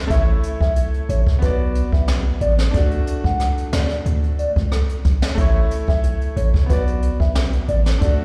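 Heard through a big sound system in a bare room with a large studio reverb, this bouncy, sunny dancehall excerpt pairs a punchy, heavy 808-style bass and a jazz brush kit with a boomy kick and high-tuned snare up front with a brilliant grand piano pumping beneath a hollow, woody clarinet-like synth lead with vibrato, chorus and digital delay, all circling A, Bm and D.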